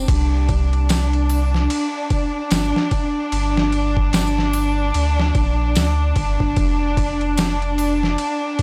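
A close chamber string section opens this brooding trip hop passage, its bowed sul tasto chords soft in attack with light vibrato, sitting up front over a deep, round sine sub bass. Alongside them a very quiet drone hums, a tense, detuned sawtooth layer with a noise edge, slow attack, long release and its own reverb. At 0.1 seconds a pitched-down, sampler-style boom bap kit arrives with a thumpy kick, medium-tuned snare, hi-hat and ride, compressed and overdriven into a gritty, up-front thud, while the swung sixteenth-note feel gives the groove a lazy lilt. Tambourine and triangle join at 0.9 seconds, dry and tucked in the background. The harmony moves from C5 to G minor before the chords drop away, and the sub bass ends at 8.2 seconds in this dark, dry fragment, coloured by transformer saturation and cut from a longer piece.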